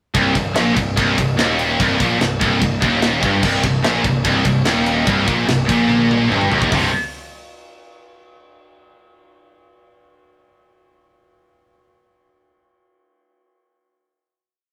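A double-tracked distorted guitar sits up front with a single-note C minor riff in this dark, heavy 146 BPM metal piece, backed by two more high-gain guitars in the background, a growly, punchy fuzz bass doubling the riff in driving eighth notes, and a tight drum kit with bright cymbals and a metal drive groove whose fill at 5.9 seconds leads into a final chord at 6.7 seconds that rings to 8.4 seconds, all in a rough rehearsal-room sound with light reverb.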